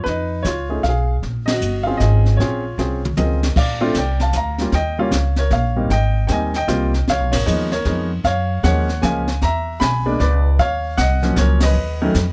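Jazz piano trio in Bb minor, moody and swinging in 3/4 at 154 BPM, with a clear, intimate baby grand carrying the melody up front amid audible action noise, a woody, thumpy pizzicato upright bass on steel strings, and a brushed kit with a high-tuned snare and boomy kick, in light reverb and close, detailed sound, with band accents at 1.4, 7.3 and 11.6 seconds and a drum fill leading into a new section at 3.6 seconds.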